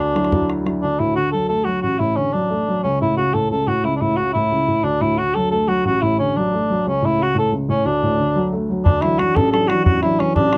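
A rollicking 6/8 jig with a straight, cheerful feel drives this short Celtic folk fragment, cut from a longer piece. A dark cor anglais leads the tune up front in a classical style with light vibrato and a roomy tone, while a mellow, woody upright piano supports it with long-sustained chords that move between D and A/C#. A boomy bodhran comes in briefly at 0.2 seconds and returns at 8.9 seconds as the melody starts again, all captured with close, detailed microphones and light reverb.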